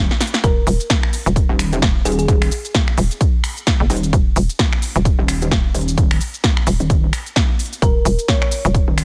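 Gritty and aggressive, this short bass house excerpt rides a swung sixteenth-note groove with a dry, close sound. A pulsing, heavy wobble bass built from detuned sine tones opens at the start, saturated and compressed with chorus and overdrive, pumping against the beat. A big-room dance drum kit arrives with a quick fill in its first moments, bringing a punchy snare, crisp hats, cabasa and finger snaps that carry a tape-warm tint and the air of a large room. From 0.4 seconds a punchy, overdriven electronic kick sits up front alongside a hollow, bouncy FM bass with a knocking attack and tube saturation, also pumping. Floating darker behind them, a round, tine-like synth pluck resembling a thumb piano adds gentle phrases with chorus and dub echo, returning briefly near the end at 7.8 seconds.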